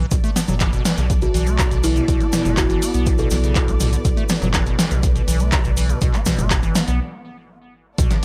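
Acid house at 122 BPM in B minor with a raw, trippy mood, built on a squelchy, resonant square-wave acid bass riff with filter sweep, chorus, tube saturation and tape echo over a deep, round sine sub bass and a punchy electronic kick, with an up-front analog drum machine supplying handclaps, hi-hat, snare and toms, a grainy, bright tube shaker and lush bowed strings pumping in the background, while a woody, airy kalimba melody with tape echo rings out from 1.2 to 3.6 seconds before a break at 7.0 seconds, all in a light reverb with a faint mains hum.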